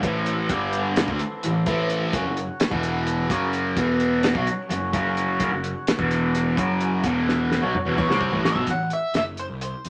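A dark, mysterious stretch of psychedelic rock, cut from a longer piece, opens with a bright, double-tracked fuzz guitar riff up front, run through distortion and phaser, over a warm, overdriven electric bass and a cloth-damped drum kit. The kit sounds muffled and gritty, with a tight kick, a fat snare, hi-hat and toms, and its top end is rolled off. Behind them, a reedy, nasal hand-pumped harmonium breathes sustained chords as the harmony moves from Am through G5 to repeated shifts between F#5 and E5. The groove runs in 7/8 at 257 BPM counted in eighths, with a straight feel, and a drum fill from 7.3 to 8.7 seconds closes the first section. A round, double-strung mandolin enters up front at 8.0 seconds with a picked melody, and at 8.7 seconds the guitar and harmonium drop out as the music returns to Am. The parts sit in a wet studio reverb with a short decay.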